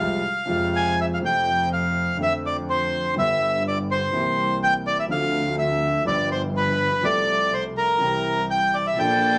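A rubato 4/4 tango pulse at 124 BPM carries this tense, melancholic fragment in F major, where a reedy, close-miked bandoneon sings the melody up front over a dark, mellow grand piano with audible action noise and deep bass, a clear bowed double bass with vibrato anchors the low end, the harmony moves from Fm to F and onward through Dm7, G and C7, and a soft-attack, sul tasto string section enters with floating stabs at 9.0 s, all set in a moderate studio reverb.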